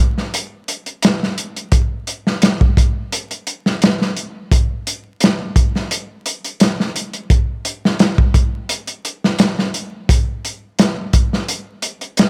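A layer of vinyl crackle and a light reverb frame this short excerpt from a longer trip hop piece, lending it a cinematic, melancholic air. At 0.2 s a crunchy breakbeat drum kit enters and carries the whole passage, moving at 86 BPM in a straight 4/4 feel. The acoustic kit sounds as if captured in a small room, sitting up front with a dark, saturated character and a rolled-off top end. Hi-hat, a punchy kick and a medium-tuned snare give the groove its weight, while a gritty edge roughens the smooth body of the drums. The brooding pulse holds steady through this single section until the clip ends at 12.3 s.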